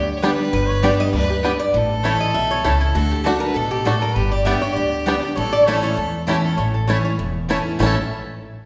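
A metallic, nasal lap resonator guitar, played with fingerpicks and slide, carries the melody in this virtuosic, driving bluegrass excerpt at 198 BPM, swung in 4/4 and set in A mixolydian over G, A and D chords. A clear, earthy bowed fiddle with light vibrato plays a second line until 6.6 s, while an up-front, full-bodied picked steel-string acoustic guitar gives accompaniment over a thumpy, woody gut-string upright bass. Twangy banjo arpeggios and bright double-string mandolin stabs sit in the background from 0.2 s, and the recording carries a wet recital hall reverb.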